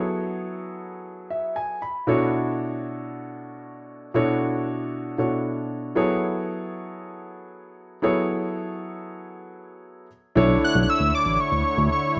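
A fat, detuned sawtooth lead carries the melody from 10.6 seconds in this slick, late-night funk excerpt at 116 BPM in B dorian, arriving over a warm grand piano that comps with a fill on F#m11 and Bm11 chords from the start, while a brassy, nasal pad with chorus and a clean tine electric piano bass join at 10.4 seconds in a rough home demo mix with light reverb.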